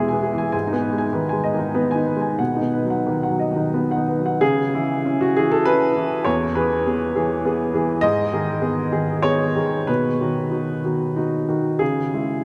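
Neoclassical minimalist piano in a wistful, melancholic mood, this fragment of a longer piece features a clear, woody upright piano playing alone in a rubato 3/4 from E2 to G#5, cycling through E, G#m, B and C#m, with a new section beginning at 4.4 seconds; the instrument sits up front yet rings out in a long cathedral reverb typical of a church or concert hall.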